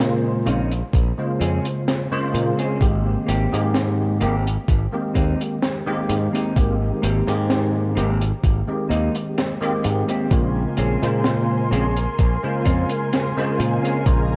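Over a slow, straight 4/4 pulse, a thumpy, overdriven electronic kick sits up front beside a crunchy breakbeat kit of cabasa, hi-hat and a high-tuned snare, its gritty, rolled-off top keeping the groove dark and smooth. This dreamy, woozy vaporwave fragment, cut from a longer piece, rests on a bright, growly fingered electric bass and a bell-like tine electric piano that carries the accompaniment through ensemble chorus, 12-bit sampler grit and tape echo. From 0.5 seconds a mellow electric guitar adds a clean, fingered riff, softened by a low-pass filter, subtle chorus and its own tape echo. The harmony moves from Bbm9 to a long stretch of Abmaj9, and when Bbm9 returns at 10.3 seconds a muted, con sordino string section enters with veiled, lush sustained chords, a soft attack and vibrato. The whole mix carries light reverb and the worn, warbling pitch drift of old cassette tape.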